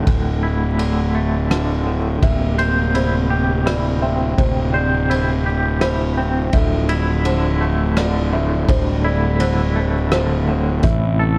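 Cathartic and melancholic, this post-rock fragment in 3/4, cut from a longer piece, rests on a growly, up-front fuzz bass and a loose indie drum kit with a punchy kick, dark cymbals, hi-hat, ride and rim clicks. A twangy, clean electric guitar picks arpeggios through tremolo and tape echo while a pedal steel guitar holds lush, chorused chords in the background, and a soft, felt-muted upright piano joins at 2.2 s with echoing arpeggios. The warm production adds light reverb, small room ambience and vinyl crackle as the harmony moves from Dmadd9 to C7/D and back, landing on Am at 10.8 s.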